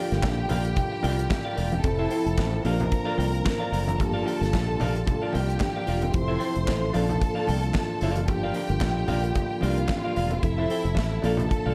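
Disco at 112 BPM in G dorian with a sultry, driving feel, this short cut from a longer piece cycles through Gm7, Fmaj7 and Bbmaj7 over a lightly swung sixteenth groove. A round, foam-muted fingered bass sits up front beneath a polished, airy drum kit with a tight kick, medium-tuned snare, hi-hat and handclaps, while very quiet low-tuned congas ring softly from 0.2 seconds. Smooth bowed strings with tape echo carry a second line above a clean, picked semi-hollow guitar and a reedy electric piano with fast tremolo in the background, and a distant, roomy French horn section holds dark sustained chords, all in a dark, warm production with light reverb and small room ambience.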